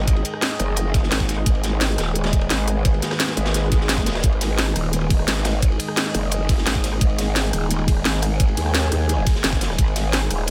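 Dark technical drum and bass with a mechanical feel, built on a growling, distorted growl bass and a deep, warbling ambient pad holding sustained chords under sidechain pumping, while a knocking electronic kick and an up-front drum and bass kit with cracking snare and crisp hats drive over a gritty, saturated breakbeat kit in the background, and a very quiet electronic swell enters at 3.7 seconds in this excerpt from a longer piece.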